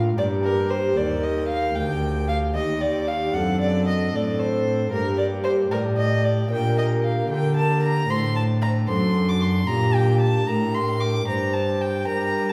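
An up-front, reedy gut-string violin, entering at 0.2 s, carries a second line above an airy wooden baroque flute melody with vibrato, a full principal-chorus pipe organ in romantic voicing and a rich bowed cello bass in this grave, introspective baroque-style sonata passage in 12/8 at 76 BPM with rubato, settling in G minor from 6.5 s and heard from further back in a wet recital hall.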